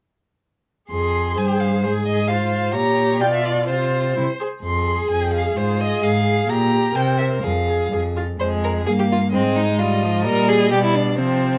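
A quick duple metre drives this classical-period string quartet movement, though the pulse bends freely with rubato, giving the playing an urgent, dramatic edge. All four bowed parts enter together at 0.9 s and play through to 11.6 s, each a single player using vibrato. The first violin carries the melody high above the group, sounding expressive and somewhat distant, with portamento slides between notes, while the second violin's focused tone shapes a supporting line beneath it. The viola fills in the accompaniment with similar expressive portamento, and the cello anchors the bass with a smooth, even tone, placed close and up front. Minor harmonies darkened by diminished chords push the tension forward, and the opening phrase returns at 8.4 s. Light reverb and a dark, warm production frame this excerpt, cut from a longer piece.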